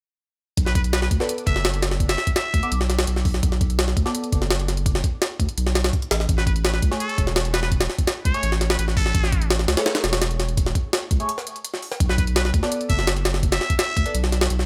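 A raspy, growling trumpet with a straight mute, treated with dub echo, cuts through this frenetic yet nostalgic drum and bass and jungle excerpt at 168 BPM in B dorian, entering at 0.7, 6.4 and 12.1 seconds over a gritty, pitched-up sampler-style jungle kit with a thumpy kick and high-tuned snare, a deep, saturated sine sub bass, and nasal, band-passed sawtooth chord stabs colored by phaser, subtle chorus and dub echo as the harmony moves between Bm7 and Amaj7.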